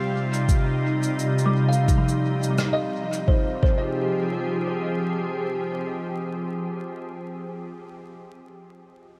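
A swung 86 BPM groove in 4/4, carried by a muffled, pitched-down electronic kick drum up front and a distant, roomy cabasa and rim click with dub echo, drives this hazy, spacious ambient dub fragment in F minor, where a bright, detuned organ-like pad with ensemble chorus holds sustained chords moving from Cm to Fm7, a glassy texture of drifting overtones hovers in the background until 3.3 seconds, and a woody, hollow-toned kalimba enters at 1.5 seconds with filtered, tape-echoed arpeggios, the whole set in a huge ambient reverb with a bed of vinyl crackle.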